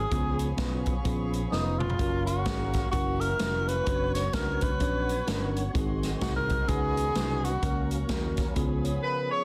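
A breathy, whispered tenor saxophone carries the melody up front with scooped notes and an intimate jazz vibrato, its slapback echo ringing through this reverent yet jubilant slice of uptempo swung gospel. Beneath it, a fat, lightly overdriven tonewheel organ with key click and slow rotary spin sits in the background alongside a gut-toned string section, while a mellow tine electric piano, a round, punchy fingered bass and a roomy big-band drum kit with a boomy kick keep the swing moving, the kit adding a fill at 1.5 seconds. At 9.0 seconds a clear, smooth-topped horn section steps up front to take the melody, all within a dense, heavily limited mix with light small-room ambience.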